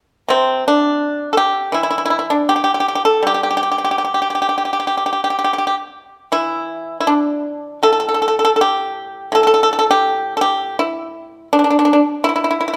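A moderate recital hall reverb surrounds this short piece, cut from a longer work, yet the pipa itself sits dry and up front. This is Chinese traditional music for solo plucked strings, pastoral and elegant in mood, set in the G zhi mode at about 81 BPM in 4/4 with a rubato feel and uneven beats. The pipa enters at 0.3 s and carries the whole recording alone, ranging from A2 to A4. Played with fingerpicks, its acoustic tone is warm yet percussive against the hall's gentle ambience. A new section begins at 6.3 s and runs to the close at 12.8 s.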